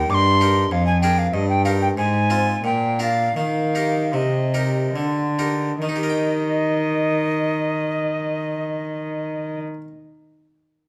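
In a moderate large-studio reverb, this serene, dance-like baroque-style sonata excerpt in Eb major and 3/4 moves with rubato between 68 and 99 BPM, slowing from 0.4 to 5.8 seconds, as an airy, expressive alto recorder with vibrato and a tongued chiff carries the melody up front, a rich, nasal gut-string cello bowed by one player supplies the bass, and a bright, plucked harpsichord with a single set of strings fills in the accompaniment.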